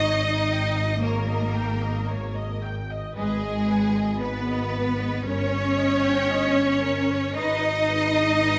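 A string orchestra opens together in a slow, rubato romantic movement in G# minor at 57 BPM, yearning and elegiac, with a warm violin section carrying a smooth melody over a distant, lush second violin line, focused violas in accompaniment, a clear cello section up front and a close, rich double bass section grounding the bass, every section bowed with vibrato in a moderate scoring-stage reverb as the harmony moves from D#7/G# to G#m.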